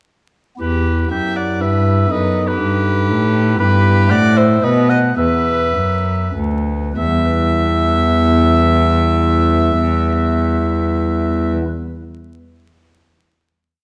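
A warm oboe carries the solemn, flowing melody of this short baroque-style sonata movement in triple time, doubled in thirds and in unison by a reedy violin with light vibrato, while an up-front gut-string cello moves between walking and sustained bass lines, and a hollow chamber organ with chiffing flute stops adds rolled chords, all slowing from 2.9 seconds into a final chord at 7.0 seconds within recital hall reverb and vinyl crackle.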